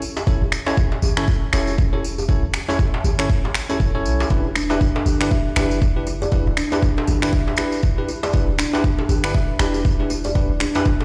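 A bell-like tine electric piano opens the excerpt with clean stabs carrying dub echo and sidechain pumping, joined at once by a jingly tambourine and a tight, cracking djembe. This is hypnotic, earthy afro house at 119 BPM in 4/4, with a 16th-note swing in E dorian, moving from A/E to Em7 at 4.3 seconds. A deep, up-front electronic kick anchors the groove, while a boomy 808-style bass with tube saturation pumps beneath it and layered, overdriven electronic finger snaps add grit. At 4.3 seconds a woody, hollow kalimba enters with short, thumbnail-plucked arpeggios that also carry dub echo and sidechain pumping. The mix sits in light reverb and small room ambience, with the sound of a big system played in a bare room under a large studio reverb.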